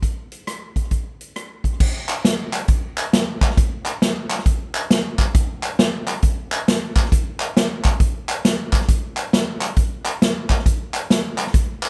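A swinging big-band drum kit opens this reverent, uplifting gospel excerpt with a punchy kick, medium-tuned snare, rim clicks, hi-hat and crash cymbal sitting up front in a big, natural room, joined at 2.1 seconds by hollow, vintage-sounding group handclaps set lower in a rough home demo mix.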